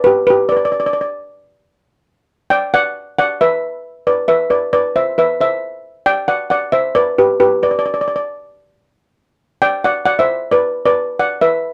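A straight, even 4/4 calypso rhythm carries this bouncy, sunny fragment of a longer piece. A solo double seconds steel pan, struck with hard rubber sticks, sits up front with a dark, shimmering metallic tone as it moves through G, B minor add eleven and E5 harmonies. The sound is dry and close, like a 1970s studio recording.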